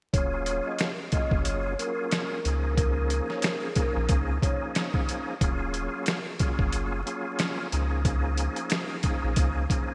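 Boom-bap hip-hop in Eb minor at 91 BPM with a swung, dark and reflective feel, built on a gritty, pitched-down, overdriven sampler-style drum kit with a thumpy kick and gated reverb, a deep, round dub sub bass, and a reedy, up-front tonewheel organ with key click, fast rotary speaker and cassette-tape colour alternating between Ebm11 and Db6 chords, while a ringing vibraphone with soft mallets and slow motor vibrato carries a brief delayed melody until 4.6 seconds, all set in a lush hall reverb with bright 1980s-style digital sheen and vinyl crackle.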